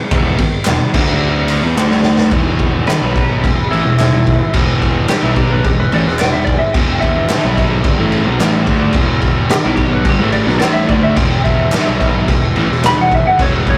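A thick, double-tracked fuzz guitar riff opens this swaggering, raw garage rock excerpt. It moves between E5 and D5 power chords over a raw drum kit and a fuzz-laden picked bass sitting in the background. The drums sound up front and dark, with a punchy kick and a medium-tuned snare in a bright stone room, while crisp, dry group handclaps join low in the mix from 0.6 seconds. A drum fill at 1.8 seconds kicks the groove into its second section, where a clean, twangy lap steel guitar enters at 2.9 seconds with a compressed slide solo ringing high above the distorted low end. The whole take has the rough feel of a rehearsal room, with tube saturation and light reverb giving it a loud, gritty edge.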